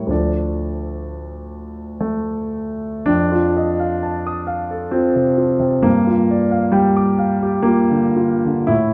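A polished, up-front concert grand piano with deep bass carries this bittersweet, stormy fragment of a romantic character piece, played alone in a rubato three-beat pulse across a range from D2 to Eb6, moving into a new section at 3.1 seconds as the harmony passes from Dm through F7 to Gm7, all set in a moderate recital-hall reverb with a dark, warm production.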